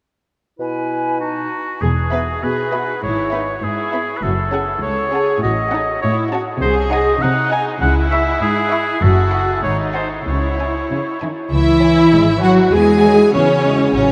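Playful and mischievous, this cinematic, whimsical film cue at 99 BPM in 2/4 opens with a clear solo oboe, airy flutes, a smooth clarinet and a mellow bassoon, before a warm viola section up front, rich cellos and expressive double basses take over the accompaniment and bass from 1.8 s, while an intense violin section carries the melody over a focused second violin line in the background; the oboe continues until 11.2 s, the key turns from E major to C# minor at 6.6 s, and a tight French horn section adds sustained chords near the close, all within a vast, echoing space.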